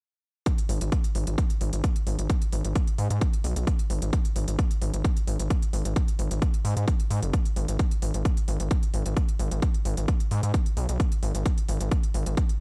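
A dry, gritty hardware sound with a cassette-tape grain frames this short cut from a longer piece of driving peak-time techno, intense in a straight 4/4. A heavy, overdriven electronic kick sits up front with a touch of studio reverb, anchoring the groove from 0.5 seconds. Smooth electronic hi-hats, also overdriven and lightly reverberant, ride beneath it at a lower level and pump with sidechain movement. From 0.7 seconds a saturated synth bass enters, aggressive and sawtooth-edged with oscillator sync, a resonant filter pluck and a fast attack that settles into sustained tones, ranging from F#1 to G#2 and pumping with sidechain movement. The three parts run together as one unbroken section until about 12.6 seconds, keeping the energy tight and forceful.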